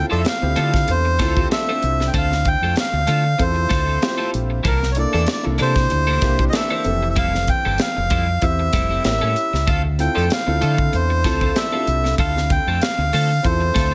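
A polished studio sound with a touch of reverb frames this slick, bittersweet jazz-funk pop piece from the 1980s, cut from a longer work and moving at 96 BPM in 4/4 with a light sixteenth-note swing in D minor. A reedy, breathy melodica carries the melody up front, close-miked and dry, while a fingered electric bass with an envelope filter sits equally forward with an amped, direct tone. A concert grand piano with deep lows and a natural sound supplies the accompaniment through an analog chorus, and a bright, twangy twelve-string electric guitar plays a picked, compressed riff bathed in lush chorus. A clear horn section with vibrato and octave doubling adds a smooth second line in the background before dropping out at 11.8 seconds. A crisp fusion drum kit with a high-tuned snare, punchy kick and hi-hat rides on airy gated reverb, as the chords move from Dm7 through C13, Fmaj9 and A7b9 before returning to Dm7.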